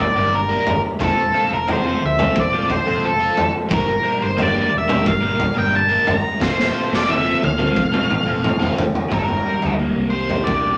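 Psychedelic rock with a mysterious, trippy mood, this excerpt from a longer piece rides a straight 4/4 groove as a dark octave-fuzz lead guitar carries the melody up front over a double-tracked, phaser-treated overdriven electric guitar riff and a round, amped picked electric bass. A raw garage drum kit enters at 0.7 s with a punchy kick, gritty saturation and a muffled, rolled-off top, playing a fill from 6.4 s to 9.1 s before a short closing section. Beneath these parts, a very quiet, silky string machine holds sustained vintage chords with ensemble chorus, all set in a small room with a wet reverb.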